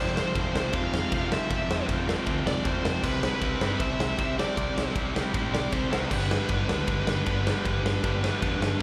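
A bluesy, distorted lead guitar melody with slapback and tape echo opens this rebellious, upbeat punk rock excerpt in G mixolydian at 156 BPM, riding over background riffs from a crunchy overdriven guitar and a tight, bright distorted guitar, both with slapback echo, and a growly, amped picked bass, before a big up-front acoustic rock kit of crash and ride cymbals, medium-tuned snare and punchy kick enters at 0.2 seconds as the chords move from F to C to G, all heard like a live gig through the venue's PA.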